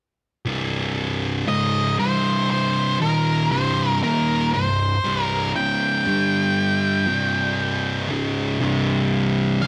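A slow, straight 4/4 pulse at 59 BPM drives this sludgy, heavy metal excerpt, with a thick, double-tracked fuzz guitar grinding out a low riff from 0.5 seconds over C minor before moving to G5 and C5 power chords. At 1.5 seconds a dark octave-fuzz lead guitar joins with a picked melody in a higher register, its distorted tone trailed by tape echo. Both guitars sit up front in a lightly reverberant space, the riff guitar carrying a warm, saturated weight beneath the lead.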